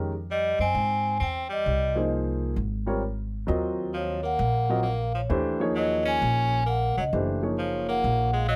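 Modal jazz at 132 BPM in 4/4 with a swung eighth-note feel, cool and hypnotic, cut from a longer piece and built on Fm9 moving to Ebm9. A polished upright piano comps up front beside a thumpy, woody pizzicato upright bass, while a mellow vibraphone played with soft mallets, motor off, carries the ringing melody from 0.3 seconds. An edgy, forceful tenor saxophone with vibrato adds a punchy second line below it, all captured by close, detailed microphones with light reverb.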